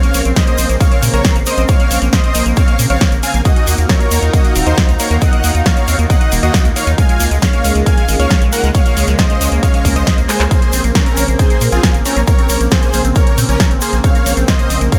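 A straight 4/4 pulse at 136 BPM drives this emotional, soaring uplifting trance passage in Bb minor, with a punchy, tape-warm electronic kick up front from 0.4 s, an analog drum machine supplying handclaps, hi-hat and snare with a fill at 10.3 s, and a grainy, distant tube shaker in the background. Beneath it, a gritty, saturated synth bass pumps against the kick, a squelchy liquid acid bass spins resonant arpeggios through chorus and tape echo, and a lush unison pad sustains thick chords through chorus and phaser over Bbmadd9, Ebmadd9 and Db6. On top, a huge, euphoric supersaw lead carries the melody with airy detuned shimmer, tape echo and sidechain pumping, all set in light reverb in this section cut from a longer piece.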